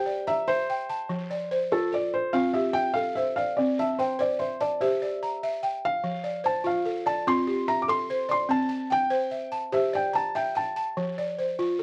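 A felt-muted upright piano carries the melody here, its soft, mellow tone and short sustain giving the line an intimate, close-up character as it moves between A4 and D6. Beneath it, a balafon struck with soft rubber mallets plays arpeggios from F3 to Bb5, its woody, buzzing voice set in a boxy small room and sitting up front alongside the piano. This short excerpt of West African traditional music, cut from a longer piece, moves at 97 BPM in a straight 12/8 feel in F major, with a warm, flowing mood. The harmony alternates between C and F throughout, settling on F at 11.0 seconds. The piano stops at 11.1 seconds while the balafon rings on briefly until 11.8 seconds. Light reverb softens a dry, gritty hardware recording.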